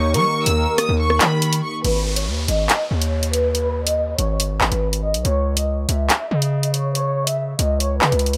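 This tense, menacing drill piece opens with a lush bowed violin section carrying the melody in G# harmonic minor. Alongside it from the start, briefly, sit a velvety, chorused synth lead, a sustained detuned sawtooth pad and a dark, boxy concert grand piano sitting very quiet beneath them. The drill drum kit comes in at 0.1 s with handclaps, hi-hat and rim click in a half-time feel at 141 BPM, while a heavy, saturated 808-style bass sits up front with a distorted, aggressive growl. By 1.9 s the lead, pad and piano have dropped away, leaving the vibrato-rich strings, bass and drums as the harmony moves from D# to G# minor. A downlifter passes through the middle, a filter sweep runs across the back half as the chords shift to C#madd9, and the dry mix lets a tape echo trail the violins.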